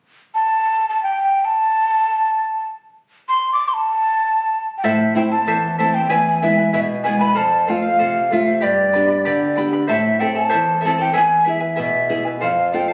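Andean folk with an earthy, festive mood, this short excerpt cut from a longer piece moves in a straight two-beat metre. A breathy large quena opens alone at 0.3 seconds, its wooden, end-blown tone sitting up front with a crisp, chiffy attack and a straight, unwavering sound as it carries the melody. At 4.8 seconds a fingerpicked nylon-string guitar and charango join together, the guitar small and close while the charango sits further back, its double courses shimmering with some strings doubled at the octave. Under the quena, the accompaniment moves through a minor-flavoured progression of Am, E, F and G. The sound has the feel of a phone recording made in the room, with a club-like reverb and noticeable compression.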